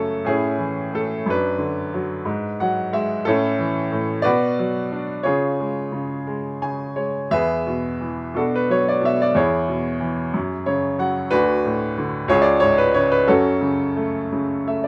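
The rhythm moves in 6/8 at 60 BPM, counted in dotted quarters, with uneven beats and a free rubato that lets each phrase breathe. This is a dark, wistful piece of lyrical classical solo piano in F# minor, tuned to A4 = 441 Hz, and it is cut from a longer work. A single upright piano carries everything from C#2 to G#5, its tone bright and woody with an open, brilliant edge, and it sits up front in a moderate studio reverb. Short piano fills recur between phrases, first at 2.3 seconds, then at 6.3 and 10.3 seconds, and once more at 14.3 seconds. The harmony drifts through A, D6/F#, G#m7b5, Bm, C#, E and F#sus2 before coming to rest on F#m near 13.3 seconds.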